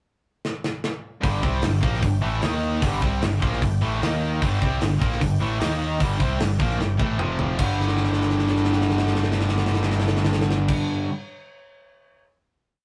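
A rough rehearsal-room recording with a moderate small-room reverb gives this short, complete hard rock piece a raw, menacing heaviness. At 151 BPM in straight 4/4 and G minor, a tight metal drum kit opens with a fill from 0.4 seconds, its bright cymbals and tight kick set up front with a big rock groove. At 1.2 seconds three distorted guitars enter together on a power-chord riff moving between Gm and Eb5, one of them double-tracked and very quiet, another sitting in the background. A growly, punchy overdriven picked bass doubles that riff in driving eighth notes, while a gritty tonewheel organ with key click and slow rotary speaker holds a very quiet sustained pad above. More drum fills push the riff through F5 into a final G5 chord at 7.6 seconds, which rings until the guitars stop near 11 seconds, with the drums carrying on to about 12 seconds.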